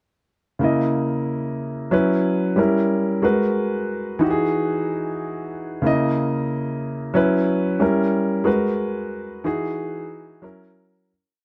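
In a straight 4/4 at 92 BPM, this short soul piece in C# dorian is carried entirely by a solo grand piano, whose bittersweet, smooth mood comes through held chords in spread voicing, touched with grace notes and moving through C#m69, F#7sus4, Gdim7, G#m9 and Emaj9 before landing on F#7. The piano sounds clear, natural and up front, with audible action noise lending an intimate feel. Light reverb and a dark production surround it until a fade-out from 8.5 to 11.1 seconds.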